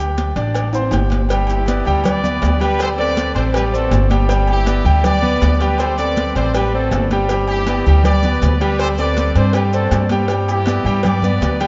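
Driven by a straight four-beat salsa groove, this festive, danceable fragment of a longer piece opens with a woody, thumpy pizzicato upright bass and a brilliant, long-sustaining concert grand piano up front, rocking between D7sus4 and G. Thin-skinned congas, grainy maracas, and ringing timbales and agogo bells sit in the background alongside a tight, very quiet cowbell. A drum fill runs from 0.7 to 1.3 seconds before a bright, smooth-topped trumpet section takes the melody at 1.5 seconds, all bathed in a vast, echoing cathedral reverb with a softened top end.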